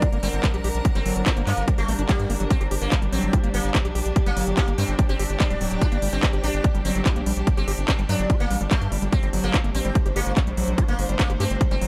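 A heavy, overdriven electronic kick drives this alien psychedelic trance piece at 145 BPM in G harmonic minor. Around it sit a deep, round analog bass with tube saturation, a squelchy, distorted acid bass riff with dub echo, and overdriven techno handclaps and smooth hi-hats. A buzzing, shimmering sitar melody carries phaser, sidechain pumping and dub echo, while an evolving wavetable pad with phaser and built-in reverb and a lush, bowed symphonic string section both pump in the background. A very quiet electronic swell appears at 1.9 seconds, and the whole is set in a light reverb.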